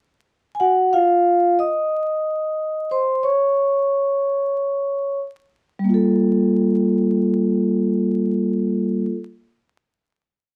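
Vinyl crackle opens this short, nocturnal hip hop excerpt in G minor, and at 0.5 seconds a solo vibraphone played with soft mallets enters. The tempo sits at 91 BPM in 4/4, with a 16th-note swing that gives the cool mood a relaxed lean. The vibraphone is mellow and ringing, with its motor off, and its close-miked, full sound sits up front in the mix. The line moves between G3 and Eb6, first over an F7 harmony, then through a passage with the chords dropping away, before settling onto a Gm9 at 5.9 seconds as a new section begins. Light reverb and the crackle frame the instrument until it stops at 9.2 seconds.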